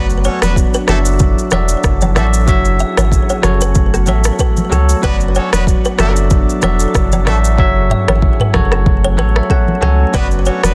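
Hypnotic and sultry, this afrobeats groove in F# minor moves at 94 BPM with a gentle sixteenth-note swing, cycling through Bm/F#, Dadd9, C#m/F# and F#m over a deep, round sub bass and an up-front electronic drum kit with a deep kick, rim clicks, shaker, toms and a softly clipped snare. A bell-like tine electric piano carries the bright, clean accompaniment and adds a fill from 8.9 to 10.1 seconds, while a loose horn section with light vibrato and octave doubling plays a second line. In the background sit a woody, dry kalimba riff with delay, soft-handed congas and a glassy, warbling FM pad with chorus and its own reverb, all in a dense, heavily limited mix where the hi-hats drop out from 7.6 to 10.1 seconds.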